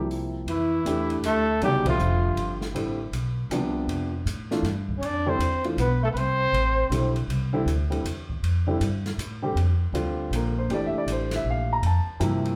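A mellow trumpet with vibrato carries the melody up front while a breathy, subtone alto saxophone with scooped notes sounds distantly beneath it, the pair playing two short phrases, the second arriving at 5.0 seconds, as a warm grand piano, a woody pizzicato upright bass and an airy jazz kit with dark cymbals and a boomy kick keep a swung three-beat feel going through this searching, open modal jazz excerpt, which features a band accent at 1.8 seconds and a harmonic shift at 9.6 seconds, all heard from further back in a reverberant large studio.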